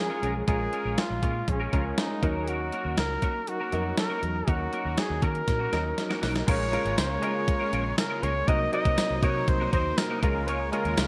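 Moody and dramatic, this 1980s-style pop cut has a clear, up-front flugelhorn carrying the melody with vibrato over an intimate concert grand piano, whose polished, long-sustaining tone is treated with analog chorus. A twangy, compressed twelve-string electric guitar plays a riff through ensemble chorus and digital delay, while a dark, foam-muted fingered bass and a thumpy 12-bit digital drum machine with gated reverb drive the groove. Detuned, sawtooth synth brass stabs sit in the background until 6.4 seconds; after a drum fill from 5.5 seconds, a shimmering string-machine violin section enters at 6.5 seconds with sustained chords, all set in bright digital production with plate reverb.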